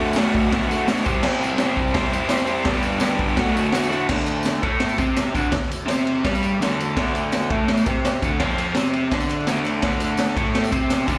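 A raw, club-reverbed live gig heard through the venue's PA opens this swaggering garage rock excerpt at 168 BPM in D mixolydian, where a crunchy, double-tracked overdriven guitar with slapback echo drives the riff up front over a gritty, boomy drum kit with a high-tuned snare and dark cymbals, while a jingly tambourine sits in the background and the chords move through D, C and G before settling on D5 at 4.1 seconds.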